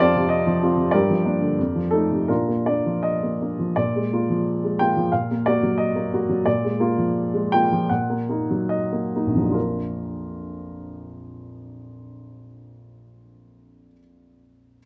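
A warm baby grand piano opens this short excerpt alone, sounding natural and up front as it carries a romantic character piece in B-flat major. The mood is hopeful and passionate, moving in 2/4 with a flexible, rubato feel and a tempo that drifts between 66 and 102 BPM. The harmony moves through Gm7 and F7 to settle on B-flat, then sways between Bb7 and Ebm/Bb chords over a steady B-flat foundation, lending a yearning, bittersweet color. From about 5.8 seconds the pace slows until 9.6 seconds, where the music comes to rest on a B-flat chord. Close, detailed microphones capture the instrument within a moderate large-studio reverb that gives the notes a gentle halo of space.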